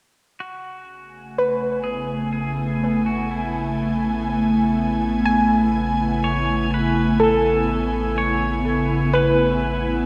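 An ethereal, airy pad sits up front with ensemble chorus and slow-attack detuned chords from 1.4 s in this serene, warm ambient piece at 62 BPM in 3/4 and A major, where a twangy, fingerpicked pedal steel guitar carries the tape-echoed melody and a deep, round sine sub bass holds A1, both fading in from 0.4 s, while a soft, dark pluck with analog chorus and tape echo spins arpeggios over a single Amaj9 chord, all bathed in a lush 3-second hall reverb and cassette tape colour.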